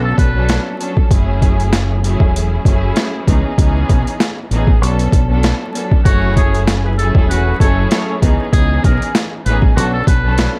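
A swung, head-nodding boom-bap groove drives this reflective yet tough hip hop passage, cut from a longer piece. Its sampler-style drum kit sits up front, compressed and pitched down, with a thumpy kick, a high-tuned snare and hi-hat, all gritty with overdrive and re-recorded in a large room. A dark, round fingered electric bass anchors the low end, while a lush bowed string section with vibrato and a smooth top carries the minor ninth chords throughout, softened by a cassette-tape haze and plate reverb. A buzzy, thin muted trumpet in a jazz style touches the opening briefly, then returns at 6.0 seconds as a brilliant solo voice with light vibrato, a soft attack and analog delay. Alongside it, a warm pop-style horn section adds filtered stabs until 8.2 seconds, and a steady vinyl crackle coats the otherwise dry mix.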